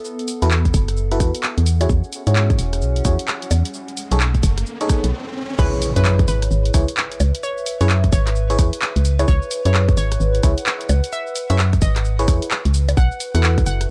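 UK garage two-step with a late-night, soulful mood, where a dry, punchy analog drum machine of bongos, shaker, handclaps and rim clicks sits beside a tight, up-front electronic kick, a hollow, organ-like FM bass and a warbling, nostalgic pad, glassy FM electric piano stabs with tape echo run throughout, and after a riser a bouncy, detuned square pluck melody enters alongside an impact at 5.6 seconds for the drop.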